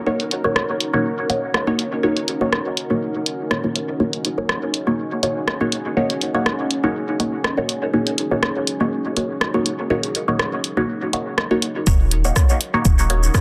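A filtered dub chord stab sits up front through this short dub techno excerpt, its muted, detuned sawtooth-and-square tone plucked with a fast attack and short decay, coloured by phaser and a dub echo, and pumping against the beat on an Eb minor seventh. Beneath it a deep, moody ambient pad holds sustained chords from the start, its full-bodied unison sound softened by chorus, built-in reverb and a slow attack. A deep house drum kit of cabasa, hi-hat and rim click plays throughout at 122 BPM in 4/4 with a light 16th-note swing, its hats, percussion and snare dulled by low-pass filtering and the snare given soft clipping. At 11.9 seconds an electronic kick drum arrives with a deep, layered low end alongside a soft, round dub sub bass on Eb1, while a filter sweep moves across the stab to the end at 13.4 seconds. The mood is deep and nocturnal, set in a moderate spring reverb and a dense, heavily limited modern master.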